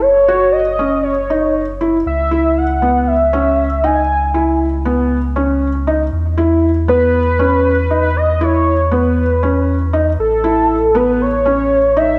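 A cassette home recording with moderate spring reverb and small-room air carries this hypnotic, melancholic piano and strings electronica excerpt in C# minor at 118 BPM, where a velvety, wave-folded synth lead with chorus, vibrato and tape echo carries the melody over a round, deep sine sub bass, while a soft, felt-muted upright piano, intimate and mellow with audible action noise plus its own cassette grain and tape echo, plays a riff from 0.3 seconds over chords moving from F#5 through C#m7 and E5 to A.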